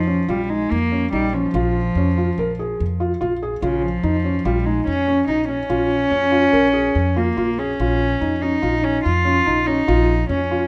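A nasal, reedy bowed cello carries the melody over woody, thumpy pizzicato upright bass from the start, joined at 0.1 seconds by mellow felt-muted upright piano arpeggios with audible action noise, in this hypnotic, pensive contemporary chamber piece in 5/4 at 144 BPM, set in Bb dorian over a steady Bbm chord with light reverb, cut from a longer work.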